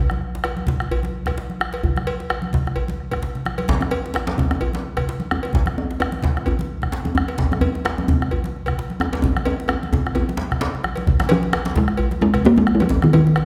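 At 0.1 s, a deep, dark bombo sits close and dry at the front alongside thick-skinned, medium-tuned congas with a compressed, saturated edge and a tight, cracking djembe. A metallic cowbell joins a moment later, and this earthy, driving West African drum ensemble settles into a 130 BPM groove in 4/4 with a light swing on the sixteenths. At 3.7 s, a second djembe with a warm, deep tone enters up front in a live room. Drum fills punctuate the ensemble along the way, leading to a shift into a new section near the end. At 11.3 s, a talking drum steps forward as the melodic voice, ranging from Eb3 to Bb3 with a short ring, while a recital-hall reverb of about 1.4 s gives this fragment of a longer piece a resonant, churchlike space.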